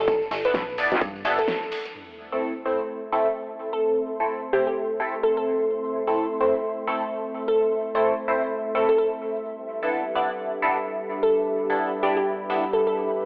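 Swaggering, aggressive bass house at 128 BPM in A minor with swung 16ths, this excerpt opens on a drop where an overdriven punchy kick, a big-room kit with a huge snare, hi-hat and ride, distant grainy shekere, a metallic FM bass and a brief saturated wobble bass drive beneath a glassy, crystalline wavetable pluck melody, a nasal band-passed chord stab with phaser and a dark analog pad. A sub drop impact arrives at 2.0 s, and an ethereal airy pad enters at 2.9 s over the G6 and Am chords, all bathed in a lush hall reverb with a telephone-like tone.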